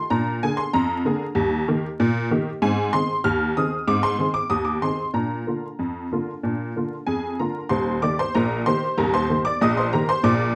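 Dark production with vinyl crackle and light reverb frames this cheerful, jaunty ragtime excerpt in Eb major at 95 BPM in a straight 2/4, where a detuned, jangly honky-tonk upright piano plays solo and up front across a range from Eb1 to F6, moving from Bb7 to Eb, Ab and Bb before a new section begins on Eb at 7.7 seconds.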